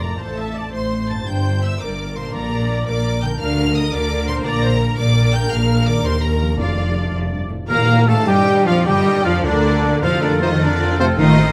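Heard in a moderate recital hall with a gentle bloom of reverb, this spirited, cheerful passage from a longer romantic symphonic movement moves in a brisk 6/8 at roughly 102-115 dotted-quarter beats per minute, settling into Bb major from 3.4 s. A lush violin section carries the melody with focused vibrato, while a second, more distant violin section adds an intense supporting line and the violas fill in smooth, even accompaniment. Beneath them, close-sounding cellos and expressive double basses anchor the bass, and a concert harp rings out fingerpicked arpeggios in the background, with very quiet timpani struck with soft mallets adding round touches. At 7.7 s the full band lands an accent as the woodwinds enter on second lines: a bright, vintage-toned clarinet, a mellow, hollow silver flute with a crisp attack, and a warm oboe. Joining them, a punchy French horn section holds sustained chords, a clear trumpet adds very quiet stabs, and a close, very quiet tam-tam shimmers until 9.2 s, lending the closing bars a grander, celebratory lift.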